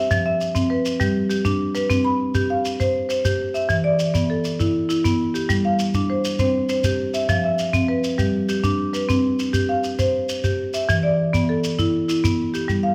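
A dark, percussive marimba struck with hard mallets sits up front, rippling through smooth arpeggios from E3 to B5 in an mbira-style interlocking cycle in 12/8, while a grainy, mellow shekere adds acoustic percussion, also up front, both set in a moderate recital-hall reverb in this warm southern African traditional excerpt.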